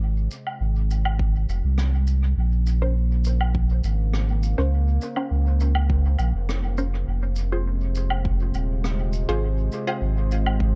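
A round, sine-toned sub bass sits up front in this spacious, deep ambient dub cut in F minor at 102 BPM, under a smooth, warbling, detuned analog pad that fades in with chorus, while shaker, woodblock and rim click with brushes and dub echo enter at 0.3 s, a layered electronic kick sits in the background from 1.2 s, and muted, full-bodied filtered chord stabs with phaser, cassette tape color and dub echo arrive at 2.8 s, all in a dark, warm small-room production moving from Fm to Bbmadd9 and back.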